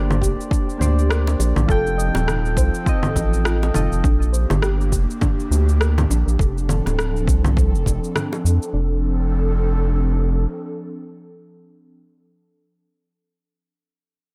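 A digital ambience surrounds this short sunset chillout piece, cut from a longer track, in F major at 102 BPM with a gentle 16th-note swing and a warm, sunny mood. A round analog bass sits up front, deep and mellow with an evolving tone, beneath an airy, breathy pad holding sustained chords that linger until 11.9 seconds. Dark, full-bodied electric-piano-like synth keys with chorus and digital delay open the piece and fall away at 4.1 seconds, while a gentle pluck plays arpeggios in the background through a filter sweep. The drums pair an overdriven, deep electronic kick with layered electronic congas, cabasa and rim click, and low-tuned acoustic bongos in a small room join at 1.3 seconds. The chords move between Bb69, F7 and F6, and by 9.0 seconds the drums and pluck have dropped out, leaving the bass and pad to close the passage.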